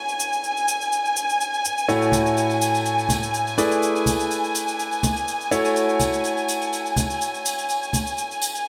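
A bright concert grand piano carries the riff from the opening, brilliant and up front with deep bass in its lower notes and a tape echo trailing behind it. This joyful, uplifting piece of piano house moves in 4/4 with a light swing on the sixteenths, and the cut is taken from a longer track. Alongside the piano, a dark studio violin section holds sustained chords, its close, woody, bowed tone colored by vibrato and placed near the front. A layered, electronic cabasa drives the beat from just after the start, tape-warm and re-recorded in a small room, while tambourine and congas join at 1.9 seconds with ringing acoustic hits from hard hands. The harmony moves from A6 to E7/A at 3.6 seconds and back to A6 at 5.5 seconds, all set in a lush hall reverb that gives the mix an open, glowing space.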